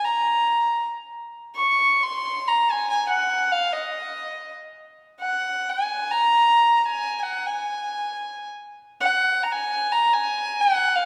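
A lone bowed violin opens this solemn, introspective fragment of Indian classical music, cut from a longer piece. The single player draws a dark, nasal, gut-string tone in a period style, with a reedy edge that sits up front yet carries a distant quality. The line stays high, moving between Eb5 and Db6. At 4.9 s the opening material returns and carries through to the close at 11.1 s. A wet concert-hall reverb surrounds the instrument, lending the performance the spacious air of a church or concert hall.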